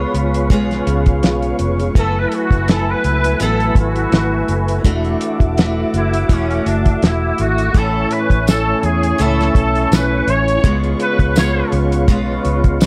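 A clear, up-front trumpet carries the melody from 2.0 seconds, with light vibrato, scooped notes and a vintage pop tone, its sound thickened by ensemble chorus and a slapback echo. This laid-back, nostalgic indie and bedroom pop piece moves at an easy 83 BPM in 4/4 with a gentle sixteenth-note swing, in A major, drifting through chords such as F#m11, E9sus4 and Amaj7. A mellow, flute-like tonewheel organ with key click and chorus vibrato plays a fill over the opening two seconds and keeps accompanying throughout. A bright, picked steel-string acoustic guitar shimmers with lush chorus and warbly pitch drift, while a swirling, detuned sawtooth pad with phaser sits in the background. Underneath, a foam-muted, round and punchy electric bass pairs with a dry, cloth-damped drum kit whose fat snare and tight kick sit up front. A jingly, distant tambourine joins at 8.5 seconds, all within light reverb and small room ambience.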